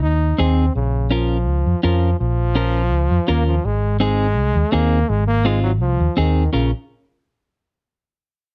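A brilliant, punchy trombone with vibrato opens this short, fiery Latin clip, played in a pop style and sitting close and up front as it carries a second line over the groove. Beneath it, a fingered electric bass gives a round, amped low end, and it is the loudest of the three parts. A clean electric guitar joins at 0.4 seconds with picked, compressed accompaniment that stays warm and present. The harmony moves between Ab and Bb minor chords, giving the danceable straight 4/4 feel a dark, driving edge. The sound is dry and detailed, with all three parts playing together until 6.7 seconds, just after a new section begins at 6.5 seconds.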